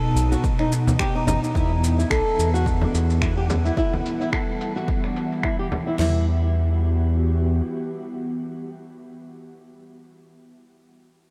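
Over a lightly swung 108 BPM groove in 4/4, this meditative, mystical organic downtempo excerpt in E minor moves from B7 to Em beneath a huge, dreamy reverb, as an ethereal, detuned pad with ensemble chorus and sidechain pumping holds sustained chords until 9.0 s, a fingerpicked flamenco guitar with fresh strings plays chorused, filtered arpeggios with delay, an up-front sawtooth synth bass with ring modulation pulses under sidechain pumping, and a punchy, overdriven deep house kit with fat snare, crash and toms enters just after gritty, compressed shaker and finger snaps and is then joined by a deep, soft-handed frame drum before the percussion falls away near 6 s.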